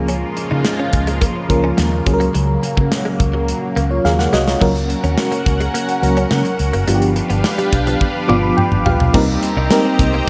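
A punchy, up-front, airy studio drum kit with a medium-tuned snare, hi-hat, tambourine and toms drives this glossy, nostalgic 1980s-style pop excerpt at 106 BPM, with fills at 4.0 and 8.0 seconds. A mellow FM electric piano with tremolo, which adds its own fill at 8.0 seconds, sits beside a lush, thick, detuned synth pad treated with chorus and phaser and a round, dark muted bass, while a twangy, clean electric guitar riff with chorus and analog delay stays in the background. A tight vintage horn section enters with stabs at 9.1 seconds as the harmony moves from Db6 through G7 to Cm7, all within a dreamy mix soaked in plate reverb.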